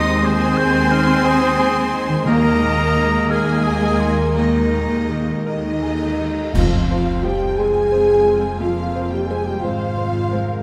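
Mellow French horn chords sit at the heart of this sorrowful, bittersweet cinematic film-score fragment in a rubato 6/8, beneath a lush, focused violin section carrying the melody and a more distant, intense second violin line. Airy, hollow flute, clear oboe and roomy clarinet add background lines, the latter two dropping out at 5.4 s. Bright grand piano with audible action noise, smooth violas, very quiet cellos, expressive double basses and ringing fingerpicked harp fill out the orchestra, while cymbal swell, clash cymbals, concert bass drum and soft-mallet timpani enter at 2.3 s and mark a full-ensemble accent as the music turns toward a new section at 6.5 s, all within a reverberant scoring-stage space.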